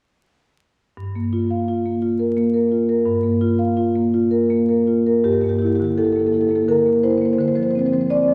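A wet reverb with the long tail of a large scoring stage surrounds this short excerpt, and a layer of vinyl crackle runs beneath it. It is a contemporary classical piece for solo marimba in G dorian, moving at 84 BPM in 3/4 with a rubato feel and a hypnotic, reflective mood. The marimba, played with soft mallets, sits up front with a mellow, round tone and ranges from G2 to F5. Its opening passage, from 1.0 to 5.2 seconds, rests on Gm7. The second passage then moves to Gm6 and reaches Dm7 at 7.4 seconds before the cut ends.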